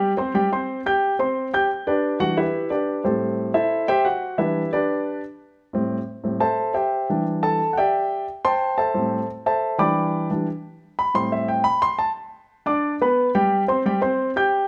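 Driving and danceable, this short Latin excerpt features a lone baby grand piano, cut from a longer piece and moving with a straight feel in 4/4. The piano sits up front with a dark, mellow tone and an intimate closeness, its action noise audible beneath the notes as it ranges from A2 up to G6. After a brief opening on a suspended G chord, the piano takes a solo from 1.7 to 12.5 seconds over a steady alternation of Em7 and Am7. At 12.5 seconds the opening material returns, settling through Gadd11 back to Gsus4. A moderate large-studio reverb gives the natural piano sound a sense of space.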